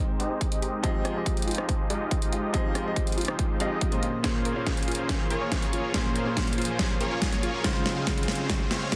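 The huge, detuned supersaw chords sit up front in this playful, bright future bass excerpt, carrying the riff from Ab3 to Eb5 through sidechain pumping, dub echo and a low-pass filter that sweeps across the whole 9 seconds as the passage builds. Beneath them, a grand piano with long sustain lays down polished accompaniment, also pumping and echoing, while a very quiet, full-bodied pluck with a noise layer spins arpeggios between F4 and F5. At 141 BPM in 4/4 with a half-time feel, the harmony moves from Abmaj7 through Fm9 and Bbm9 to Dbmaj7. An overdriven dubstep kit of hi-hat, rim click and deep snare arrives at 0.2 seconds, joined by a punchy, layered electronic kick at 0.4 seconds, both sitting up front, and a drum fill runs from 4.2 seconds to the end. A faint riser enters at 2.0 seconds, all within a moderate digital room and a dense, heavily limited modern master.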